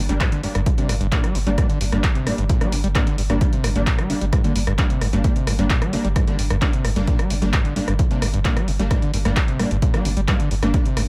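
A straight 4/4 pulse at 131 BPM drives this relentless, industrial stretch of peak-time techno in G phrygian, anchored by a punchy electronic kick sitting up front while an analog drum machine adds handclaps, hi-hat and rim click, both re-recorded in a small room. Beneath them a round sine sub bass holds G1 with tube saturation, sidechain pumping and a low-pass filter, as an overdriven sawtooth acid bass riff squelches between G2 and G3 through distortion, a resonant filter sweep, sidechain pumping and analog delay. Thick, detuned unison rave stabs from G3 to D4 hit over a Gm chord, coloured by chorus, their own reverb, sidechain pumping and delay, in a lightly reverberant, echo-heavy mix cut from a longer piece.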